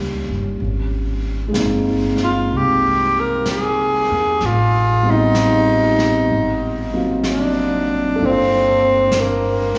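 A lazily swung 4/4 sets the pace for this wistful, melancholic jazz ballad, cut from a longer piece, with a dark, mellow baby grand piano comping long-sustained chords over a woody pizzicato upright bass from the start and a vintage brush kit joining at 0.6 seconds with a rolled-off, roomy snare and hi-hat sitting low in the mix. At 2.2 seconds a growling tenor saxophone takes the melody up front, its breathy subtone tinged with a raspy, gritty edge and soft attack. A drenched cathedral-like reverb hangs over the sound as the harmony drifts from Abmaj9 through Am7b5 and Ab13 to Gm9.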